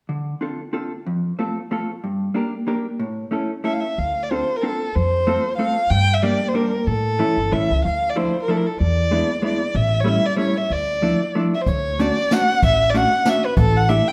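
Musette waltz with a nostalgic, whirling swing and rubato feel, where a clean, picked hollow-body electric jazz guitar sets the minor-key changes before a dark, bowed solo violin with vibrato and portamento takes the melody up front at 3.6 seconds, woody pizzicato upright bass on gut strings joins at 4.0 seconds, and a brushed jazz drum kit with a boomy kick arrives only at 11.7 seconds, all set in a moderate recital-hall reverb in this fragment of a longer piece.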